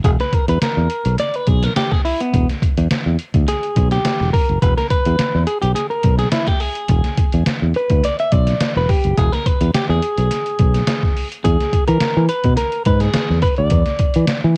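Funky and strutting, this 105 BPM excerpt of straight-feel 4/4 funk in E mixolydian rides a single E7 chord, as a clean, compressed electric guitar plays a solo throughout over a growly, punchy fingered electric bass and a gritty, pitched-down trip hop sampler-style drum kit with a thumpy kick, hi-hat and medium-tuned snare, the guitar and drums both carrying cassette tape coloring in a home cassette recording with light reverb.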